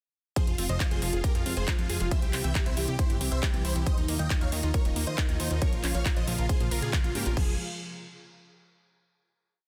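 Dense and heavily limited, this short uplifting trance piece opens straight into a bittersweet, soaring drop: a huge, euphoric supersaw lead repeats a riff over a pedal note in thirds and sixths, a lush unison pluck plays a sixteen-step arpeggio in the background, and a plucky analog bass rolls in sixteenths, all three pumping with sidechain while dub echo trails the lead and pluck; beneath them a punchy four-on-the-floor electronic kick sits up front beside metallic hi-hats, handclaps and crash from a big-room dance kit in a small room, before a final chord arrives at 7.4 s.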